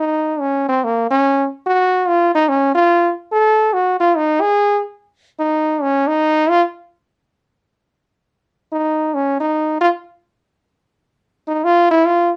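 Moody and late-night, this jazz fragment swings at 144 BPM as a brilliant, punchy trombone plays alone and up front from 0.0 to 12.3 seconds, forceful with vibrato and scooped notes, set in light reverb within a dark, warm production.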